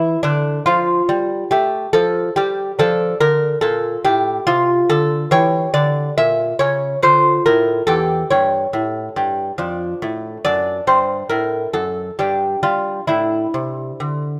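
Grave and solemn, this short excerpt from a longer baroque-style dance for solo lute moves in a slow 3/4 at 70 BPM in D minor, with a rubato feel. The fingerpicked lute, with its delicate gut double strings and some octave-doubled courses, sits up front across a range from E2 to E5 for the full 14.4 seconds. Close, detailed microphones and light reverb capture its warm tone as the harmony passes from D minor through a diminished chord and A7 to a closing Asus4 at 13.1 seconds.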